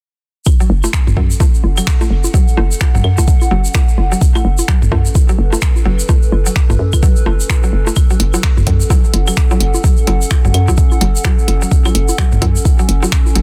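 A hollow, bouncy FM bass with sidechain pumping knocks up front from 0.7 seconds beside a deep electronic kick drum in this quirky, clinical minimal techno excerpt in F# minor at 128 BPM, swung on the 16ths. Around them sit a woody, mallet-like synth pluck riff with chorus, cassette tape character and tape echo; a warbling, nostalgic lo-fi pad with a slow attack, built-in reverb and pumping; tape-warm electronic bongos, claves and toms with delay; and a grainy tube shaker. From 0.9 seconds a layered techno kit adds finger snaps, hi-hat and a softly clipped snare, within a dry, dense, heavily limited master.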